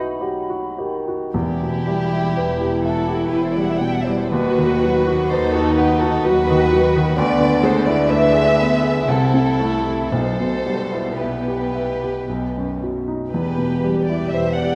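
Classical romantic music for piano and orchestra in a rubato triple metre, cut from a longer piece, with a passionate, tragic mood. A clear, polished baby grand piano carries the melody up front throughout, while the opening moment brings a brief hollow, airy flute line, a mellow bassoon accompaniment and soft French horn chords in the background before they fall away by 1.3 seconds. At that point the chamber strings take over beneath the piano: one violin section also plays the melody in the background and another plays a second line up front with light vibrato and a smooth top, all bowed sul tasto for an intimate, close sound. A dark, very quiet cello section and a pure, floating double bass section share the bass, and a viola section joins the accompaniment at 2.4 seconds with vibrato and a soft attack. Very quiet timpani with medium mallets sound close and dry at two points, from 1.3 seconds and again at 10.1 seconds, as the harmony moves from E minor through shifting inversions and a dominant seventh before settling back on E minor. 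A moderate concert hall reverb surrounds the ensemble.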